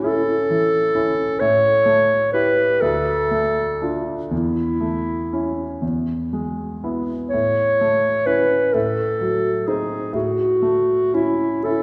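Serene and tender, this romantic classical duo in A major drifts in a rubato 6/8 at 38-45 BPM, with a warm, smooth-topped clarinet singing the melody up front over a clear, vintage-toned grand piano whose short-sustained accompaniment moves through chords including A7, Dm and Adim7, all set in a wet scoring-stage reverb heard from further back in the room across an 11.8-second excerpt cut from a longer piece.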